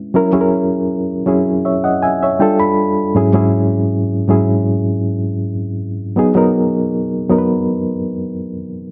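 A reedy, worn electric piano plays alone in this brief soul excerpt, clean and slightly out of tune, pulsing with a fast tremolo through its built-in speakers, placed up front in light reverb. In straight 4/4, it moves through F#7, F69, E69/G# and G#m7 chords with a bittersweet, cinematic mood, adding a short fill from 2.0 to 3.2 seconds, all within a digital ambience.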